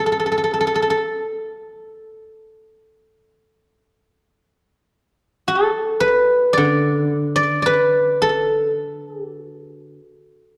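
A solo guzheng, played with fingerpicks and placed up front, rings out in silvery acoustic tones between D3 and D5 with a slapback echo in this pastoral, flowing passage of Chinese traditional music, moving in a rubato 4/4 around 54 BPM inside a moderate concert hall reverb and a dark, warm production before it stops at 10.4 seconds, cut from a longer piece.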